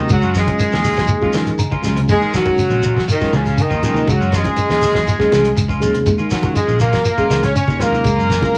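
A hypnotic, driving afrobeat excerpt opens with a clear, punchy horn section carrying the melody in octave doubling, a bright, roomy tenor saxophone with vibrato on a second line, a reedy electric piano with tremolo that adds a fill at 1.3 seconds, a slightly broken-up electric guitar picking arpeggios in the background, and a direct fingered electric bass. A dry, damped 70s drum kit with a fat snare and tight kick arrives with a grainy shekere, joined by a second, twangy guitar playing stabs through spring reverb and by low-tuned congas entering quietly at 0.5 seconds. The horns, saxophone, piano, guitars and drums carry a cassette-tape character, and the whole home recording sits in a modest booth ambience with faint mains hum.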